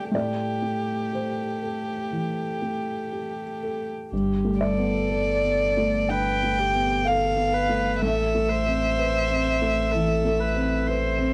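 Fragile and reflective, this short neoclassical piece for piano and strings drifts in A minor at a rubato 60-64 BPM in 4/4, taken from a longer work. A single violin carries the melody up front, its tone intimate and airy-bowed with light vibrato and a soft sul tasto attack. Beneath it, a dark, mellow baby grand gives a natural accompaniment with short sustain and audible action noise, while a lone viola adds a pure, floating line with a smooth top. At 4.1 seconds a deep sub bass with octave enters, its full sine-and-triangle tone sustained under the shift from Am7 to Gadd9, before the harmony settles on Amadd9 at 8.0 seconds. The three acoustic parts carry a cassette-tape coloring, and the whole sits in a moderate booth ambience that gives it the close, homemade feel of a recording made on cassette.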